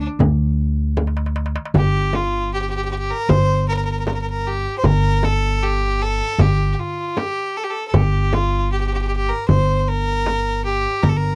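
Turkish makam ensemble music with a longing, melancholic mood, in a straight 4/4. A single bowed fiddle carries the melody up front with a clear, biting, nasal tone and light vibrato, while a woody pizzicato upright bass with steel strings holds the low end. A crisp, high metal-shell darbuka and a soft-handed, warm frame drum keep the rhythm, with a brief drum fill from 1.0 to 1.7 seconds before the next passage, all captured in a dry, close 1970s-style studio sound with little reverb.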